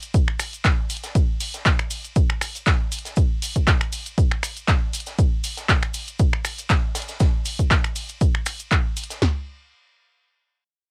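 Deep, moody house at 119 BPM with a light 16th-note swing of 54%, this excerpt from a longer piece runs as a drop for its first 9.2 seconds. Two up-front analog drum machines carry it through cassette tape saturation: one delivers a punchy kick, snare and toms, while the other adds finger snaps, handclaps, hi-hat and ride cymbal. Beneath them sit a grainy, mellow cabasa in the background and a very quiet, crisp acoustic fusion kit with a high-tuned snare, hi-hat and shaker in a small, pumping room, all captured as a dry home cassette recording.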